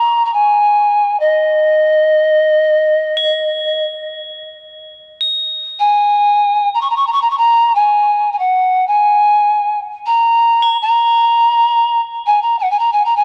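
The recording sounds dry and gritty, with a cassette-tape texture and a moderate studio reverb around the instruments. This is meditative world music in free time, haunting and unhurried, cut from a longer piece. A polished pan flute carries the melody from the start, its airy, woody tone shaded with vibrato and tongued notes, sitting up front yet sounding distant through a tape echo. At 3.2 seconds, crotales enter softly, struck with hard rubber mallets, adding a high, shimmering, bell-like ring that stays mellow and well behind the flute. The same opening idea returns at 4.7 seconds, and both parts continue together to the close at 13.2 seconds.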